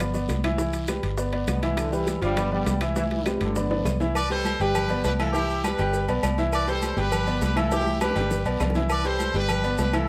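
A straight 4/4 salsa groove at 202 BPM in C major sets a festive, sunny mood, carried by a round, foam-muted electric bass up front, a bright upright piano with audible action noise, soft-handed high-tuned congas in the background, ringing timbales and agogo bells, and quiet bongos and cowbell, claves, raspy guiro and grainy maracas. A tight trombone section plays the melody from 1.5 to 3.8 seconds, and then a brilliant horn section with light vibrato and plate reverb takes over up front from 4.2 seconds. Drum fills punctuate the vamp between G, Cmaj7 and G7 in a moderate studio room.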